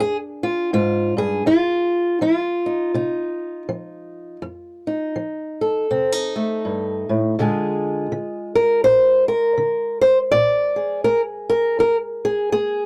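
A loping swung pulse drives this gritty, swaggering fragment of acoustic country blues, where a lone fingerpicked old ladder-braced acoustic guitar, dark and boxy with the dull bite of aged strings, sits up front in a dry, close 1970s-style studio sound touched with light reverb as it moves from a rootless Bb7 to F7 and back to Bb7 at 7.4 seconds.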